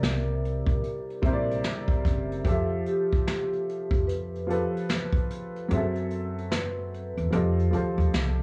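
Lo-fi hip hop at 74 BPM with a lazy 16th-note swing, this short cut from a longer piece feels hazy and reflective, moving through jazzy chords from C9 to Fmaj9, F#m7b5 and F9. A dark, slightly detuned upright piano sits up front with a mellow, tape-worn tone. Pizzicato upright bass adds a woody bottom, and a vintage brush kit plays with a medium-tuned snare and tight kick, though the kick drops out from 5.7 seconds. Alongside them, a soft-mallet vibraphone carries the melody with a ringing, metallic shimmer, slow motor vibrato and analog delay, all wrapped in light reverb, cassette tape character and small room ambience.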